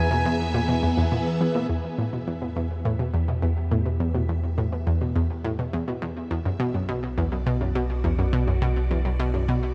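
Expansive and hypnotic, this ambient, sequencer-driven space music is cut from a longer piece and bathed in a huge reverb with a cassette tape character. A bright, detuned analog pluck riff with chorus and tape echo sits up front over a deep, wave-folded analog bass. A swirling phased string machine holds sustained chords that fade in from 1.7 s as the harmony moves from E to E minor and then to B minor at 6.3 s, while a reedy, airy concert flute with tape echo sounds only briefly at the opening, stopping at 1.1 s.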